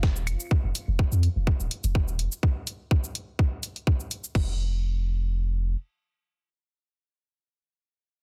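Minimal techno at 125 BPM in 4/4, this hypnotic, clinical excerpt cut from a longer piece rides a 16th-note swing of 54% and is tuned to A4 = 438 Hz. A tight, layered electronic kick drum sits up front, its tape-warm tone re-recorded in a large room. A punchy sub bass, deep and sine-like with a pitch-drop attack and sustained notes between Eb1 and F2, shares the foreground, thickened by tube saturation and pumping from sidechain compression. From 0.2 s an analog drum machine adds crash cymbal, hi-hat and shaker further back in the mix, along with a snare roughened by soft clipping. The kick and drum machine stop at 4.5 s, leaving the bass alone until 5.8 s. A digital ambience surrounds the parts, and the dense, heavily limited master gives the sound a modern, compressed sheen.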